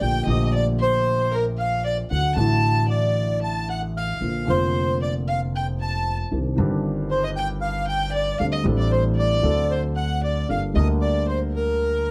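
Dramatic and passionate, this 12.1-second excerpt from a longer tango moves at 114 BPM in 4/4 with a rubato feel, set in G minor. A reedy, dark bandoneon carries the melody up front, its tone framed by a boxy small-room character, while a single bowed violin plays a second line in the same register with vibrato, soft attacks and expressive portamento, sitting close but a little lower in level. Beneath them, a mellow concert grand piano with deep bass supplies the accompaniment, and a woody, pizzicato upright bass on steel strings holds the low end up front. All four play throughout, and moderate studio reverb gives the ensemble a modest sense of space. The harmony travels from Gmadd9/Bb through D, Bb and Cmadd9 to a D7sus4 that resolves to D7 at 9.4 seconds before settling back on Gmadd9.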